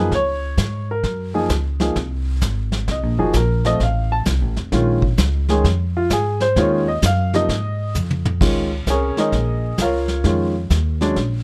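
A late-night, swinging jazz piano trio fragment: a present grand piano with short sustain solos throughout over a pizzicato upright bass that sounds woody and growly. A vintage brush kit with dark cymbals and a punchy kick adds a drum fill from 8.0 to 8.4 seconds, leading into the return of the phrase over chords like Gbadd9(#11), Cm7b5 and Db69. All three sit up front in a dry, closely miked, detailed sound.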